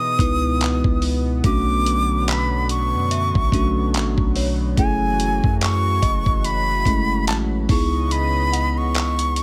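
Contemporary R&B with a moody, late-night feel and a swung sixteenth-note lilt, cut from a longer piece and moving through minor-ninth chords with a dry, close sound. A breathy, reedy concert flute carries the melody up front with vibrato and delay over a bell-like tine electric piano and a shimmering, detuned pulse-width pad that pumps under sidechain compression. A gritty, compressed soul sampler kit of thumpy kick, hi-hat and handclaps enters with a deep, mellow 808-style bass at 0.2 seconds, and a faint inharmonic FM chime joins in the background at 3.1 seconds, colored by phaser, chorus and delay.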